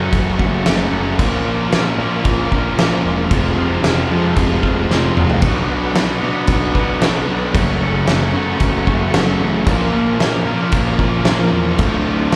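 A straight 4/4 pulse at 113 BPM drives this dark, brooding stretch of quiet-loud alternative rock, cut from a longer piece. A loose indie drum kit sits up front with a fat snare, punchy kick and dark cymbals, throwing in a fill at 4.9 seconds, while a growly overdriven fuzz bass anchors riffs from a raw garage guitar and a pair of thick fuzz guitars, one of them double-tracked, all sitting in the background. A reedy tonewheel organ with key click and rotary speaker holds very quiet sustained chords through a brooding minor progression from F#m through Bbm, Fm and Bm to Dm, all heard live through a club PA.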